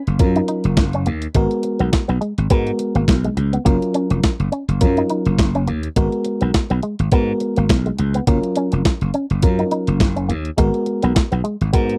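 A growly, punchy slap bass and a crisp, thumpy 8-bit drum machine open this slick, swung early-eighties boogie funk excerpt, joined at 0.2 s by a dark, fast-attack FM electric piano with a noise layer and a twangy, clean envelope-filtered electric guitar with analog chorus, all cycling between Gbmaj7 and Abm9 in a dry, close studio sound.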